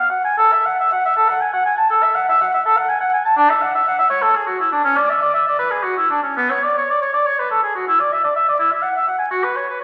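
A lilting 12/8 pulse, counted at 81 BPM in dotted quarters, gives this brief baroque-style fantasia a flowing, dance-like sway, though the solo oboe stretches and pulls the time with free rubato. In F# minor, the unaccompanied oboe plays alone for the full 9.8 seconds, ranging from B3 up to A5. Its tone is mellow and touched with a light vibrato, sitting up front in the mix yet sounding somewhat distant within a reverberant stone room whose decay lingers about 1.4 seconds. The sound carries the patina of a very old 78 rpm record, with vinyl crackle beneath the line. This short passage is cut from a longer piece, offering a glimpse of a classical-style solo.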